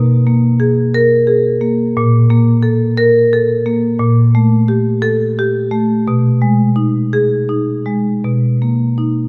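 A solo marimba played with medium hard mallets carries this short passage from a contemporary classical piece, its tone dark and smooth yet percussive, sitting up front in the sound. The mood is reflective and flowing, moving in a lilting 6/8 with a rubato feel that lets the phrasing breathe. The harmony drifts through colorful, ambiguous chords, opening on G#madd9/B, passing through a chordless stretch at 2.0 seconds, then settling onto Gmadd9/Bb before moving to B6 and Bmaj7 near the close. The instrument ranges from Bb2 up to A#4. A moderate scoring-stage reverb lends the notes a gentle halo, and the 9.3-second passage is cut from a longer work.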